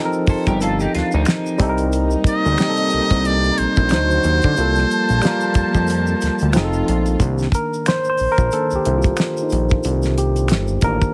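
A swung sixteenth-note groove at 91 BPM in 4/4 carries this smooth, sultry neo-soul R&B excerpt in C dorian, built on a damped 70s drum kit with a fat snare and tight kick sitting dry and up front, with egg shaker and finger snaps close behind. A fat, detuned sawtooth analog bass with a filter sweep anchors the low end, while a worn, slightly out-of-tune tine electric piano, heard through its built-in speakers, lays down chords from Eb69 through Cm7, D7b9, Gm9 and F7. A slightly broken-up, picked electric guitar with analog chorus and slapback echo appears only briefly near the start, and dark, woody bowed strings hold soft-attack chords in the background from 1.9 to 7.2 seconds. Over them, a buzzy, close-miked trumpet in a metal mute plays a forceful, jazz-style melody with scooped notes and light vibrato between 2.3 and 6.5 seconds. From 7.2 seconds the electric piano takes a solo over a Cm9 chord, all framed by light reverb and a heavily compressed, radio-like sound.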